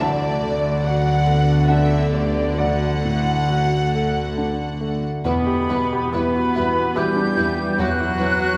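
Heard from further back in a concert hall with a long, wet reverb, this bittersweet and moving film-score excerpt drifts in a rubato three-beat feel. A present grand piano with short sustain accompanies two bowed violin sections playing sul tasto, one rich with light vibrato carrying the melody and one dark with vibrato on a second line, over a floating viola section, a soft-attack cello section and a smooth-topped double bass section. At 5.2 seconds a French horn section adds sustained chords in the background, and from 5.3 seconds a tongued, expressive flute section, a mellow cor anglais and a distant, roomy clarinet each bring a second line.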